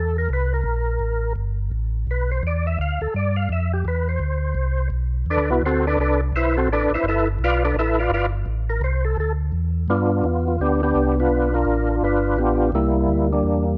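A gritty, overdriven tonewheel organ with percussive second-harmonic attack, chorus vibrato, slow rotary speaker and plate reverb takes a soulful, greasy swinging solo through the first 9.9 seconds of this soul jazz snippet, while a second, round and dark tonewheel organ with its own slow rotary speaker holds down a clean bass line up front over rich chords like G13, D13 and C9.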